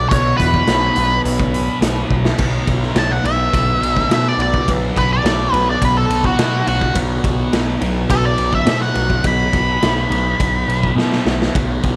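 This hypnotic, trippy psychedelic rock passage opens on a B minor chord, with a dark, octave-fuzzed lead guitar carrying the melody over a very quiet, silky string machine, a thick, double-tracked fuzz guitar riff with distortion and phaser, and a growling, overdriven picked bass. A raw garage drum kit joins almost at once, up front and gritty, with a punchy kick, medium-tuned snare, hi-hat, ride and crash in a bright stone room that pumps around the playing. After a quick drum fill, the string machine drops out at 2.4 seconds and the harmony settles onto a B5 power chord as the lead guitar launches into a solo soaked in wah, distortion and tape echo. The lead falls silent at 10.9 seconds, and another drum fill arrives at 11.0 seconds while the fuzz riff, bass and drums carry on at a steady 105 BPM in straight 4/4. The whole piece sits in a small room, and it is cut from a longer work.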